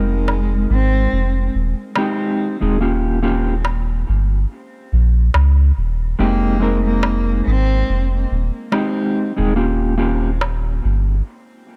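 A deep, round dub sub bass sits up front throughout this melancholic, cinematic trip hop excerpt in F minor at 71 BPM, moving between Fm7 and Eb9 under a clean, fingered electric guitar carrying tremolo, tape echo and 12-bit sampler grit. A woody, bowed cello with vibrato carries the melody until 8.2 seconds, sharing that same grit and echo, while a crisp metal-shell darbuka played with soft hands stays close and dry. The production is dark, with a small room ambience around the parts.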